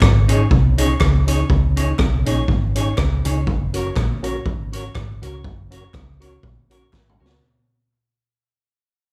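An up-front street-band drum kit drives this bouncy, cheerful ska excerpt, its boomy kick, medium-tuned snare, rim click, hi-hat and toms sounding from a small room with a rolled-off top, and a drum fill closes it at 6.9 seconds. Beneath it, a hollow-body short-scale electric bass is fingered with a round, amped tone, while a dark, very quiet electric guitar plays a low riff. From 0.3 seconds a bright, twangy clean guitar picks the accompaniment, and a mellow tonewheel organ adds stabs with key click, chorus vibrato and a fast rotary speaker. Crisp group handclaps sit in the background with tape echo. The harmony moves from Dbsus2 to Gb at 3.5 seconds over a light swing, the band plays live in one room with a lush large studio reverb, and the whole passage fades out as it is cut from a longer piece.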